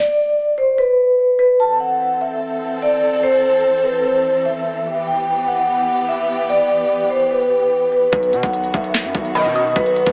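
Through a small-speaker sound and a moderate plate reverb, this menacing, dark half-time trap excerpt at 147 BPM opens on an up-front, metallic vibraphone melody with fast motor vibrato, adds distant bowed studio strings holding sustained chords with portamento at 1.6 s, brings in a heavy, saturated 808-style bass and an overdriven trap kit with knocking kick, sharp snare, crisp hats and handclaps at 8.1 s, and flashes a glassy FM synth bell line alongside edgy, nasal sync-sweep polysynth stabs with chorus and phaser at 9.4 s.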